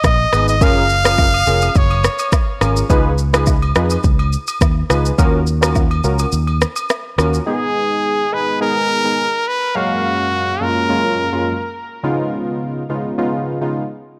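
Joyful, sunny afrobeats at 105 BPM in F# major, this dry, gritty cut from a longer piece sets a bright, vibrato-laden pop trumpet solo with tape echo over detuned sawtooth analog keys with chorus and a filter sweep, a dark, punchy fingered electric bass, an electronic afro-pop kit with deep kick, rim click and shaker, and small-room woodblock and agogo bells, until a break at 6.3 s leads to 7.5 s, where the rhythm section has dropped away and the trumpet returns over the keys alone, which continue to 13.8 s.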